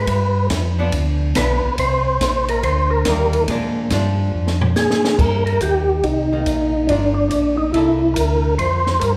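Bathed in a wet recital-hall reverb, this smoky, bluesy soul jazz organ trio excerpt swings at 141 BPM, with a mellow, round percussive tonewheel organ carrying the melody up front with key click, chorus vibrato and fast rotary speaker, soloing until 5.2 s, where a drum fill leads into a C minor passage, while a smooth tonewheel organ bass turns on a slow rotary, a compact cocktail kit with dark cymbals, a high-tuned snare and a tight kick keeps time, and a clean, picked hollow-body archtop guitar accompanies from 0.8 s to 8.0 s.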